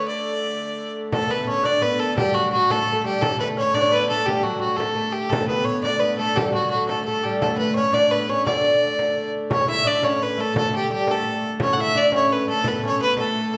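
The fiddle stands out up front, a single bowed voice with a nasal, earthy tone, a smooth top and light vibrato, carrying the melody of this festive, ancient-sounding medieval dance in D major at 115 BPM in a straight 6/8. Beneath it from the very start, a hurdy-gurdy holds an even, wheel-bowed drone in the background, its keyed sound smooth and close. At 1.1 seconds a fretless oud joins with a mellow, woody second line, its plectrum-plucked double strings giving a deep body, alongside a small, bright frame drum that sounds close and dry. The band plays live together in one room, wrapped in a large studio reverb that lends a generous wet halo while the highs stay gently rounded. Partway through, at 9.5 seconds, the tune moves into a new section before this passage, cut from a longer piece, comes to a stop.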